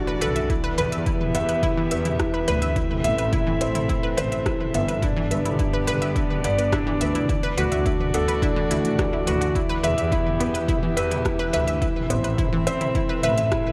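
Piano and strings electronica, hypnotic and melancholic, cut from a longer piece: an intimate felt-muted upright piano sits up front with a soft, dark riff, its action noise audible and its notes trailing into delay, while a veiled con sordino string quartet holds sustained chords that pump with sidechain. An analog pluck adds detuned sawtooth arpeggios with chorus, delay and the same pumping, over a bright, lush, bowed double bass section with vibrato. Crisp hats, rim clicks and toms from a tape-warm electronic kit recorded in a large room join at 0.2 seconds, a punchy layered electronic kick enters at 0.5 seconds, and the chords cycle through Em, Am, G and Dadd9 in light studio reverb.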